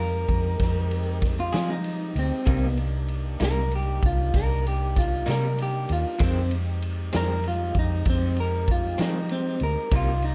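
A straight 12/8 slow blues at 64 BPM sets a brooding, smoky mood in this dark excerpt: a round, foam-muted fingered electric bass sits up front from the start, the big-band drum kit joins at 0.3 s with punchy kick, ride cymbal and snare, a lo-fi rhythm guitar with tremolo and plate reverb comes in at 1.5 s, and a fat tonewheel organ with key click and slow rotary speaker holds chords in the background over Fm7 and Cm7 while a slightly broken-up, compressed lead guitar solos on top through harmonic tremolo, slapback echo and plate reverb.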